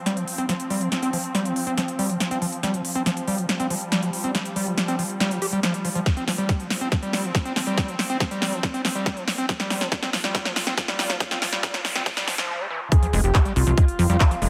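Hypnotic and driving, this excerpt of psychedelic trance at 140 BPM builds over a tense, swarming drone and a squelchy, resonant acid bass riff under a filter sweep, with punchy snare, handclaps and crisp hi-hats from an overdriven dance kit. It adds a tight kick at 6.1 seconds and a background noise sweep and sub drop at 11.8 seconds, then hits an impact at the 12.9-second drop, where a screaming, guitar-like lead with phaser and dub echo arrives and, moments later, a plucky, funky analog bass joins the low end, all bathed in a lush hall reverb.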